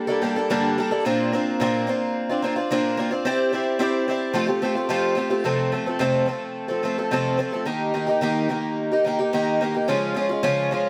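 A roomy, shimmering sound fills this short rock excerpt, with moderate large-studio reverb around a picked twelve-string acoustic guitar that sits up front and carries the piece alone at 109 BPM in a straight 4/4. Its fresh strings ring out octave-doubled with a boxy, archtop character and audible finger squeak, moving through added-ninth chords in F major before shifting at 5.5 seconds to a plainer F, Eb and Db progression in F mixolydian. The mood is warm and open-road, like a stretch cut from a longer piece.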